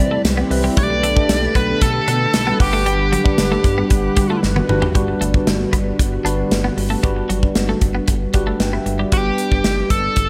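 An overdriven, biting lead guitar, picked and up front with digital delay, carries the melody in this uplifting, nostalgic 1980s-style pop piece, breaking off at 4.4 seconds for a drum fill and returning at 9.1 seconds. Beneath it, a clean tine electric piano with phaser and a glossy, nasal chorused synth bass run throughout, joined by a twangy twelve-string electric guitar riff in lush chorus, a vintage, evolving organ-string pad holding sustained chords in the background, and very quiet, round synth brass stabs early on. A modern studio drum kit with a tight kick, medium-tuned snare, hi-hat, toms and tambourine sits up front in gated reverb, the whole mix framed by a light reverb.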